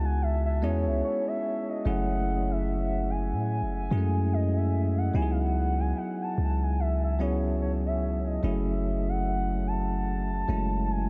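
A dreamy, reverb-soaked mix with a huge ambient space sets a longing, late-night mood in this contemporary R&B excerpt at 73 BPM in C# minor, swung on the sixteenths and moving between C#m11 and F#m9. Up front, a bell-like, bright tine electric piano carries the accompaniment over a deep, long 808-style bass with a sine tone that decays after each fast attack. Above them, a smooth portamento lead glides through the melody with vibrato, chorus and analog delay, mellow and sustained across all 11.1 seconds.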